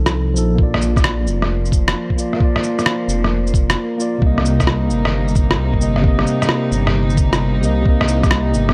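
Swung sixteenths at 132 BPM in 4/4 drive this nocturnal, melancholic future garage piece in C minor, with a muffled, pitched-down rim click and shaker up front from the start and a compressed, thumpy kick arriving at 0.6 s. A mellow tine electric piano with 12-bit sampler grit, dub echo and sidechain pumping sits over a dark, detuned sawtooth bass thickened by tube saturation, while a reedy, gut-string ensemble with light vibrato enters alongside the kick to hold bowed sustained chords low in the mix. The harmony moves from F7 to Bb and settles on Cm7 at 4.2 s, framed by light reverb and digital ambience.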